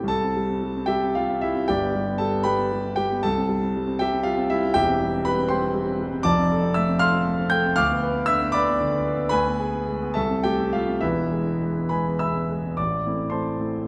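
In a rubato 6/8 lilt that moves at about 66-83 BPM in dotted quarters, this stormy, passionate romantic character piece for solo piano begins in C major and darkens toward A minor from 6.2 s. It passes through Fmaj7 and diminished harmonies before landing on E and resolving to Am at 12.8 s, where a new section briefly begins in this short passage cut from a longer work. The warm concert grand sits up front, ranging from a deep bass E1 up to G6 with an open, long-sustaining tone, bathed in a wet concert hall reverb with a 2.0 s decay.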